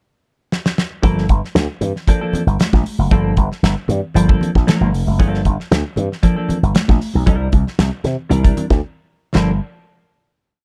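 Funk in G dorian at 116 BPM, this cool, complete piece opens with a drum fill at 0.5 seconds before a damped 70s kit settles into a dry, syncopated groove with ghost notes, a fat snare and a tight kick. An up-front slap bass growls through an envelope filter with a punchy, syncopated riff anchored on the downbeat, full of muted ghost notes and chromatic approach notes, while a clean electric guitar with lush chorus plays clipped, compressed funk chords, and very quiet, high-tuned congas add a slap on two and open tones on four. The harmony moves from Gm9 to C9 at 7.3 seconds, a break arrives at 8.8 seconds, and the piece lands on a final Gm9 in a dark production with little reverb.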